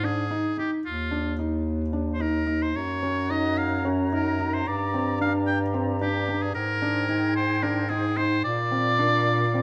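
A bright oboe with light vibrato carries the playful, shimmering melody of this contemporary chamber piece in 7/8, over soft arpeggios from a felt-muted upright piano with audible action noise and a dark, jazz-tinged bass clarinet line, while a pure, mellow small flute group enters at 2.7 s with distant sustained chords, all set in a moderate recital hall reverb.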